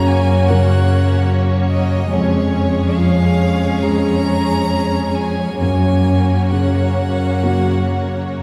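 Heard from further back in a scoring stage with a generous, wet reverb, this short cut from a longer cinematic film score is tender and uplifting, moving in a rubato 4/4 over Gb and Db/F chords. A clear, focused solo violin carries the melody with vibrato above a lush violin section's bowed second line, while a smooth, even viola section fills out the accompaniment and a warm cello section supplies the low bass. In the background, a warm concert grand piano adds deep bass, and a bright concert harp rings with fingerpicked arpeggios.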